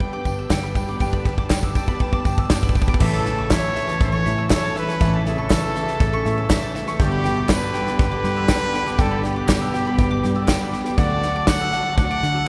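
Indie folk with a building arrangement, this nostalgic and uplifting passage moves at 120 BPM in a straight 4/4, cut from a longer piece and set in the deep, wet reverb of a church or concert hall. It opens with a drum fill on a natural country kit, up front with a punchy kick, medium-tuned snare, dark crash cymbals and a small-room sound, while a shimmering, octave-doubled twelve-string acoustic guitar, a woody mandolin picking arpeggios high up, a very quiet, mellow upright piano and a lush studio string section holding sustained chords fill out the opening. A round, foam-muted fingered electric bass sits in the background, joined by a bright, jingly tambourine kept very quiet and a hollow group handclap that is barely audible. At 3.0 seconds the chords shift from G to A as a classical-style trumpet takes the melody with light vibrato and a smooth top, and a distant, bowed solo cello adds a second line beneath it. 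The upright piano slips in a brief fill at 6.3 seconds before the harmony returns to G and finally settles on D.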